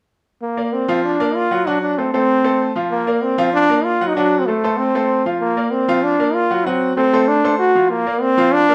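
Latin at a driving, danceable 192 BPM in this short excerpt from a longer piece: a punchy, close-miked trombone with vibrato carries the solo melody up front from 0.4 seconds, while a brilliant, woody upright piano with audible action noise and long sustain accompanies intimately from 0.6 seconds over altered D7 harmonies, all set in a moderate studio reverb.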